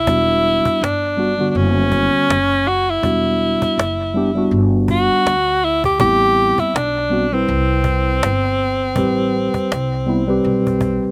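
Dry and cut from a longer piece, this mellow, cool jazz-hop groove at 81 BPM sets an edgy, punchy alto saxophone solo up front with light vibrato over a thumpy pizzicato upright bass, a clean tine electric piano moving from Em9 to Am9 at 6.0 seconds, and a woody cajon with faint snares, all swinging gently on the sixteenths.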